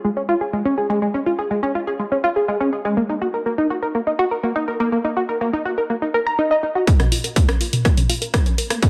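A tight, detuned sawtooth synth arpeggio drives this hypnotic, cinematic melodic techno excerpt in Bb minor at 123 BPM. Its plucky, chorused sequence carries sidechain pumping and digital delay, set in a lush hall reverb. At 6.9 s a build-up begins: a filter sweep moves over the arpeggio as a heavy, overdriven electronic kick and a gritty techno kit of hi-hat, rim click and toms arrive up front, running until the cut at 8.9 s.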